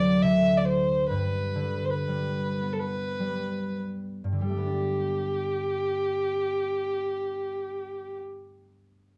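In a rubato 3/4 that drifts between 46 and 73 BPM and slows through the opening 4.4 seconds, this nostalgic, pastoral Celtic slow air in G major sets a single dark, woody bowed fiddle melody with light vibrato over ringing fingerpicked concert harp, moving from D to G and settling on Gadd9 at 4.4 seconds, all in a dusky, warm production with light reverb in this short excerpt from a longer piece.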